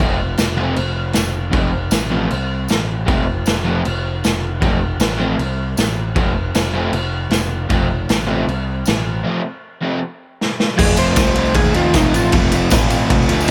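A straight 4/4 beat at 156 BPM drives this swaggering, raw garage rock excerpt in F mixolydian, with a gritty, saturated drum kit pounding out kick, snare, ride and crash from a small room while a jingly tambourine sits in the background from 0.4 seconds. A crunchy, double-tracked overdriven guitar riff sits up front over a punchy, bright fuzz bass, all starting on an F chord and cut dry with little reverb. After a break at 9.2 seconds and a drum fill, a dark, slightly broken-up slide guitar melody cuts in at 10.8 seconds and stops at 12.3 seconds.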